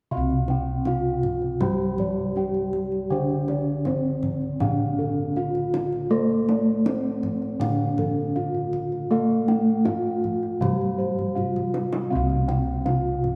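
A long, wet church reverb surrounds this short section cut from a longer Javanese gamelan piece, giving it a shimmering, ceremonial air in a straight, unhurried 4/4. Two bronze metallophones carry the melody and the lower accompaniment from 0.1 s, and their paired tuning sets up shimmering beats. One is struck with padded disc mallets for a mellow, dark, smooth ring, and the other with a wooden mallet for a warmer, boxy tone. Bossed gongs play high arpeggios and a deep bass line with round, beating bronze tones from padded beaters, one set sitting mid-forward and the other soft, dark and smooth. A deep, vintage-sounding kendang, played with soft hands and heard quieter in the blend, enters at 0.3 s and plays a short fill between 11.2 and 12.1 s.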